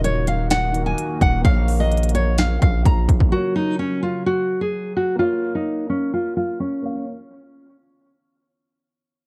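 Brooding and dark, this half-time trap excerpt at 128 BPM in Bb minor sets a full-bodied, fingerpicked nylon-string guitar melody with audible finger squeak up front over a mellow grand piano with vintage action noise, a moody, detuned pad with chorus and reverb in the background, a heavy, saturated 808-style bass, and an overdriven trap kit of hard-clipped kick, sharp snare and crisp hats, until the drums, bass and pad stop at 3.3 seconds and a filter sweep carries guitar and piano through a Gb-to-Bbm passage to 7.1 seconds.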